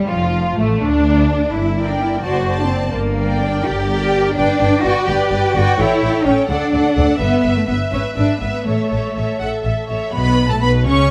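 A cheerful, lively classical-period movement for string orchestra opens with the violins singing an expressive melody over a second violin line, clear, lush viola accompaniment and up-front cello, joined at 0.1 s by smooth double basses. It moves quickly in 6/8 at 84 BPM in dotted quarters, with bowed vibrato across the sections and harmony running from Dm/F through Gm, A7 and D to close on Asus2/B at 10.1 s. A moderate recital hall reverb gives the sound a sense of space, and the piece is cut from a longer work.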